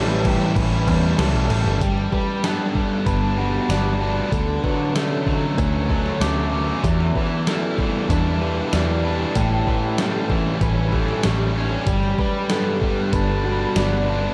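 Rock in a shoegaze and dream pop vein, this hazy, blissful cut from a longer piece moves at 95 BPM in a straight 4/4, cycling through A7, Gmaj7, Dmaj7 and Em7 in a dreamy mix soaked in a huge ambient reverb. A clean, direct-recorded guitar picks high arpeggios through lush chorus and analog delay, while a biting overdriven guitar riffs under reverse reverb and a dark, thick fuzz guitar adds a chorused, distorted riff. A bright, double-tracked overdriven guitar with spring reverb sits in the background only until 1.8 seconds, and a round, foam-muted vintage bass anchors the low end beneath a detuned, tape-warm 8-bit drum machine with a thumpy kick, medium-tuned snare, hi-hat and crash, re-recorded in a large room.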